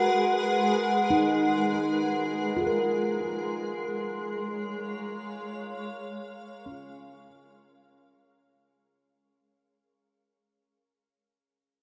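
Reflective and melancholic, this free-time ambient fragment from a longer piece sets a cloudy, evolving granular pad, bright and up front with its own reverb and a shimmer reverb, holding sustained chords from G#m7 to A#m7/G# at 2.5 seconds. A dark, ringing stainless-steel handpan, played with the fingertips, weaves meditative arpeggios through tape echo and shimmer. Everything sits in a huge, wet reverberant space as the sound fades out from 0.3 to 9.2 seconds, with the handpan ringing on to 9.6 seconds.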